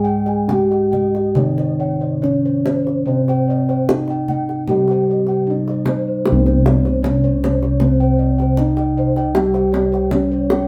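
A straight 4/4 pulse moving at 67-78 BPM carries this hypnotic, shimmering Javanese gamelan passage in C pelog, cut from a longer piece. Up front, a bronze metallophone struck with padded disc mallets carries the melody in a mellow, soft voice, while a lower metallophone played with a wooden mallet gives a close, dry, full accompaniment beneath it. High above, a set of bossed gongs with a round, dark, smooth tone and another metallophone in paired tuning weave arpeggios, the latter adding shimmering beats with a vintage, band-limited colour. The bass falls to a second set of bossed gongs heard close-miked and dry, spanning from C2 up to Ab4-20c, and a kendang played with hard hands enters at 0.3 s with a tight, small-room snap. The ensemble plays live together in one room under moderate studio reverb, shifting from its opening section into a new one at 6.3 s.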